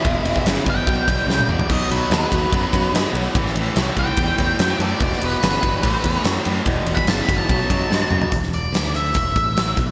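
A big, arena-sized sound with a lush hall reverb frames this brooding, heavy blues rock and southern rock cut, taken from a longer piece. A dark octave-fuzz lead guitar with slapback echo solos over a bright, overdriven, double-tracked garage riff, while a growly, punchy picked bass and a pumping acoustic kit with a punchy kick and bright cymbals drive it forward, the drums adding short fills. The riff guitar drops out at 8.3 s as the harmony shifts to suspended chords, and the lead carries on until 9.7 s.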